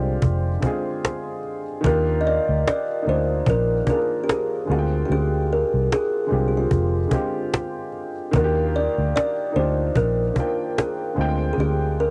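A soft, airy kalimba carries the melody in this cosy, dreamy lo-fi hip hop excerpt, its mellow fingertip plucks ringing with a hollow-box tone through plate reverb and cassette tape colouring. The piece sits at 74 BPM in 4/4 with a gentle swing on the sixteenths, in Eb major, as the harmony sways between Fm69 and Ebmaj9. Beneath it, a worn, intimate upright piano comps with long sustain, a slightly detuned character and audible action noise, bathed in its own plate reverb. A dark, round, foam-muted electric bass sits up front with a punchy, amped sound. The cajon joins at 0.2 s, close and dry with hard hands, a woody body and faint snares, also carrying a cassette tape tint. The whole piece has the feel of a home cassette recording in a small booth.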